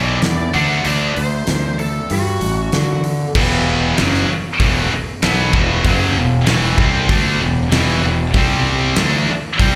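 Driving and aggressive, this hard rock fragment moves at 96 BPM in a straight 4/4, centred on E minor and heard as a live gig through the venue's PA with a touch of club reverb. A double-tracked, high-gain guitar sits up front with a bright, picked riff over E5, D and later C5 chords, colored by distortion and slapback echo. Beneath it, a fingered electric bass growls with overdriven fuzz, punchy and forward in the mix. A huge arena kit enters at 0.2 s, its fat snare, punchy kick, hi-hat and crash ringing in a big room. A warm, overdriven lead guitar through a small cranked amp carries a picked melody with slapback echo and plate reverb, then drops away at 3.0 s, just before the music moves into a new section at 3.4 s.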